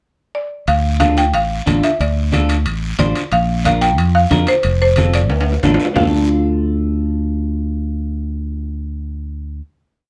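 A buzzing marimba struck with hard mallets leads this short, danceable cumbia, its woody, dry, vintage tone carrying a motif-based melody up front from 0.3 seconds. At a driving 182 BPM in D minor, a fingered electric bass enters at 0.7 seconds with a warm, direct cumbia figure, joined by congas, guiro and timbales. The congas sit in the background with a bright, thin-skinned, low-tuned sound played with soft hands, the guiro adds a raspy, close scrape, and the timbales ring with a compressed, saturated metal-shell edge, while a drum fill arrives at 5.3 seconds. A clean, picked semi-hollow electric guitar with a phaser plays rhythmic triad chords through a progression of Dm, Bb and F. The percussion stops at 6.0 seconds, leaving marimba, bass and guitar to hold a final chord in a moderate studio reverb.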